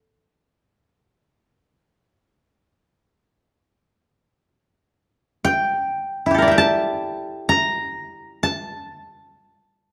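Japanese traditional chamber music for solo koto, this short excerpt from a longer piece unfolds in free time in A sen. The mood is calm and austere, with the koto plucked with fingerpicks throughout the full 9.9 seconds, moving between E4 and Bb5. Its tone is woody and dry, placed up front so each note sounds close. Around it, a moderate recital hall reverb with a 1.4-second decay adds a sense of space, and the overall production is dark. The passage falls into two statements of the same section, the second beginning at 4.4 seconds.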